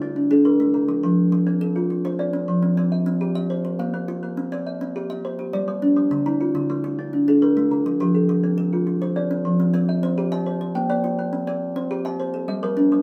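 A pair of kalimbas opens together, both playing rippling arpeggios that run from start to finish of this 13-second excerpt of southern African traditional music. The pulse sits at 138 BPM in dotted quarters within a straight 12/8, and the tuning is equiheptatonic on C, lending the harmony an unfixed, between-the-keys color. Both instruments sound plucked and woody, each with a hollow-box resonance, a thumbnail attack and a ringing tail, and both sit up front. One has a dark, smooth tone, while the other carries a vintage, band-limited character and reaches higher, to A5-43c. The players perform live in one room with moderate studio reverb, and the chords cycle through Dm, F, Cm and Bb5 before a second section begins at 9.6 seconds and closes on Gm, keeping a rippling, warm mood throughout.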